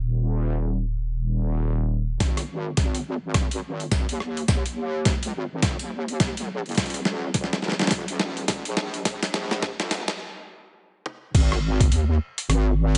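A swung 16th-note groove at 105 BPM in 4/4 drives this gritty, funky glitch hop piece, which opens with a heavy, saturated wobble bass alone, its detuned square-and-sine unison thickened by chorus and placed up front. At 2.2 seconds a pitched-down, tape-warm boom bap sampler-style kit of snare, hi-hat, rim click, toms and crash arrives alongside a thumpy, compressed electronic kick, building through drum fills and a filter sweep. A stop at 10.2 seconds gives way to the drop at 11.3, all set in light reverb.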